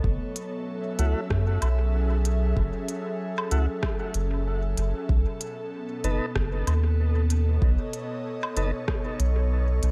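A 95 BPM ambient dub groove in 4/4 with a 57% sixteenth swing sets a spacious, meditative mood in F# dorian, as a soft, round sub bass holds up front beneath an airy, breathy chorused pad moving from F#m7 to B7 at 5.1 seconds, while a deep, overdriven electronic kick and a crisp-hatted drum kit of hi-hat, rim click and woodblock with dub echo carry the beat and a smooth tonewheel organ adds stabs through a slow rotary speaker and dub echo from 1.0 seconds, all in digital ambience.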